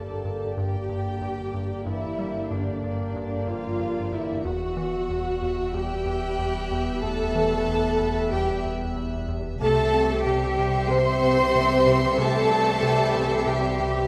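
An up-front, softly bowed cello section carries the bass line of this mysterious, uneasy suspense-film cue, joined by an intimate violin melody, a dark, smooth-topped second violin line, floating violas and background double basses, while a bright trombone section and warm French horns hold sustained chords behind a rubbery, nasal square-wave bass riff and a deep, punchy sub-bass drone, with a pure, high violin texture entering at 4.4 s and the whole cue set in a wet scoring-stage reverb.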